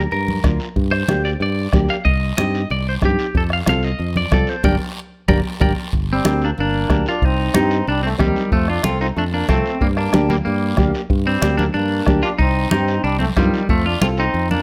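Close, detailed microphones and light reverb frame this fiery, passionate cumbia excerpt in G minor at 186 BPM, where a twangy, picked clean electric guitar with spring reverb and slapback echo carries the melody over fingerpicked nylon-string guitar with finger squeak, a round, dark fingered electric bass, hard-hand congas, raspy guiro and a dry, soft-beater bombo; the band hits an accent from 4.6 to 5.9 seconds before a brilliant, punchy trombone with light vibrato enters at 6.1 seconds as a distant, roomy second line over the cycling Gm, Cm and F chords.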